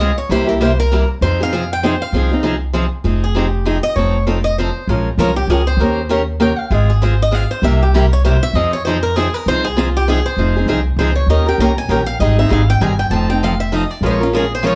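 A fast 3/4 swing at 196 BPM drives this bittersweet, fiery stretch of acoustic string jazz manouche in F minor, cut from a longer piece. The upright bass sits up front with a woody, thumpy gut-string pluck, while the parlour-toned steel-string acoustic guitar, fresh-stringed and close, carries the accompaniment and takes a solo from 3.0 s. Above them, a bright, boxy swing-style guitar picks the melody, bathed in plate reverb, all set a little back in a short studio room as chords move from C7 and Fm7 through Bbm7, Eb7 and Abmaj7.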